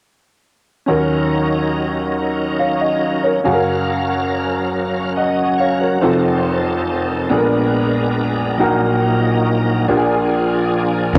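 In a slow, straight 6/8 lilt, this solemn, fervent gospel fragment pairs a clear, worn grand piano accompaniment with a shouting, lightly overdriven tonewheel organ holding sustained chords through a fast rotary speaker and chorus vibrato, both with a cassette-tape tint and moving from Ebm7 through Gbmaj7 and F7 to Bb7b9, before a bright, direct fingered electric bass sounds a single note at 11.2 s, all set in a home-recorded room with moderate spring reverb.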